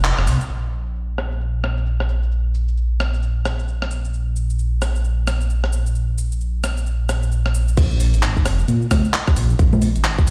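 A late-night, soulful two-step garage groove, cut from a longer piece, rides a swung sixteenth-note feel in 4/4. A deep, rumbling detuned saw bass sits up front for the whole stretch, its dark, beating tone blending sawtooth, square and sine colours with a fast attack and sustained notes. Beneath it, a gritty, pitched-up breakbeat kit with a sampler-style, tape-warm, compressed character supplies congas, crash cymbal, handclaps, hi-hat, rim click and shaker, each softened by low-pass filtering. The band hits an accent at the very start, and from 0.5 seconds a filter sweep runs across the drums. At 7.8 seconds the track drops and a tight, layered electronic kick enters, punching through the mix. The whole thing carries a light reverb and the hard, stony echo of a big sound system playing in a bare room.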